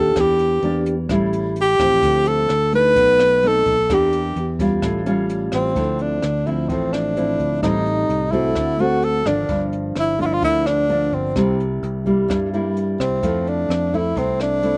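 A dry recording with little reverb and an open-air feel, this short bossa nova cut from a longer piece moves at 129 BPM in D minor with an intimate, melancholic mood. A breathy tenor saxophone carries the melody up front, mellow and subtoned, with light vibrato and scooped notes in a jazz style, and it takes a solo over the first 5.8 seconds. Beside it, a warm, thumb-plucked nylon-string guitar plays classical-style accompaniment, also up front, touched by a slapback echo. A round, punchy fingered electric bass holds the low end, while a brushed jazz kit sits farther back with hi-hat, rim click and a boomy kick, its tone dark and smooth. The harmony cycles through minor ii–V changes such as Em7b5 to A7 before opening onto Gm7, C7 and a closing Fmaj7.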